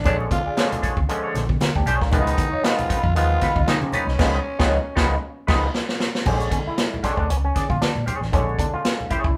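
Gritty and funky, this short cut from a longer piece moves with a lightly swung sixteenth-note feel in 4/4, the band playing live together in one room with a moderate studio reverb. A growling, raspy tenor saxophone with light vibrato carries the melody in a pop style until 5.7 seconds, over chords that shift from Bb7#9 to Db9 and back. Beneath it, a dark, round, foam-muted fingered electric bass holds the low end, a clean, picked electric guitar through a wah adds accompaniment, and low-tuned congas with a thin, bright skin sit in the background. The swinging big-band drum kit is up front yet roomy, with a boomy kick, medium-tuned snare, hi-hat and crash cymbal. A band accent arrives at 4.2 seconds, joined by a drum fill and a clav fill. From 6.3 seconds the stringy, overdriven auto-wah clav, pushed through a combo amp, steps out for a solo over the rest of the band.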